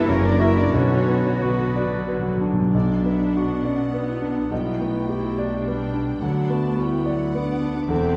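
Tragic and passionate, this romantic movement for piano and orchestra in B minor moves in a rubato 3/4 at roughly 86-109 BPM, with an up-front concert grand carrying the melody with intimate tone, audible action noise, deep bass and long sustain, while a lush violin section sings the line in the background. Around it, a bright clarinet, airy flute section, cor anglais and a second violin section weave secondary lines, rich violas accompany, a dark French horn section and mellow trombones hold chords, a very quiet trumpet adds stabs, and cellos, clear double basses and a mellow tuba anchor the bass. A timpani fill struck with hard mallets sounds from 0.7 to 2.7 seconds, and the harmony moves from F#7 through Bm and Em7/B to Bm/D, all within a reverberant scoring-stage space in this short excerpt cut from a longer piece.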